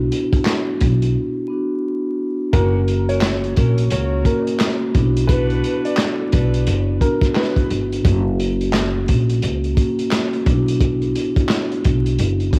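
A swung boom-bap groove at 87 BPM in 4/4 sets a gritty, reflective tone, with a crunchy, saturated breakbeat kit of tight kick, medium-tuned snare, hi-hat and handclaps sitting up front with a rolled-off top. A woody pizzicato upright bass anchors the low end, and a dark vibraphone played with soft mallets, motor off, rings through a cassette-tape coloring and filtering. The harmony in B harmonic minor moves between Bm and F#, with a break from 1.2 to 2.5 s. At 2.5 s, a worn, slightly detuned upright piano enters with a quiet melody, joined by a mellow, tight saxophone section playing jazz-style stabs with vibrato, filtered and touched by analog delay. The whole excerpt has a home-recorded cassette character, with vinyl crackle and light small-room reverb, and it is cut from a longer piece.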